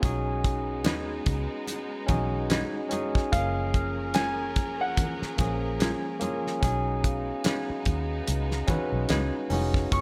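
A barky, lightly overdriven tine electric piano opens this silky, bittersweet 1970s-style soul cut at 73 BPM over a damped, fat-snared drum kit, a round, foam-muted electric bass, distant bowed strings holding lush sustained chords and very quiet congas, moving from B69 to F#maj9 and back, before a twangy, slightly broken-up electric guitar riff with tremolo enters at 0.8 seconds, soft-mallet vibraphone adds a ringing texture in the background from 2.1 seconds, and a dark, mellow grand piano takes the melody at 3.3 seconds, all in a small room with light reverb.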